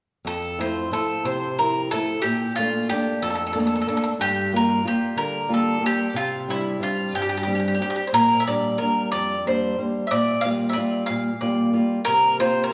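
An up-front bowl-back mandolin carries the picked, double-string melody of this romantic, sunny Italian folk serenade in F major, moving in a rubato 6/8 at 61 BPM over a fingerpicked acoustic flamenco guitar whose chords, from Fmaj7 through Bbmaj7 and Gm7 to C7sus4, carry an audible finger squeak, with the pair played live in one room and bathed in a lush large-studio reverb, in a short excerpt cut from a longer piece.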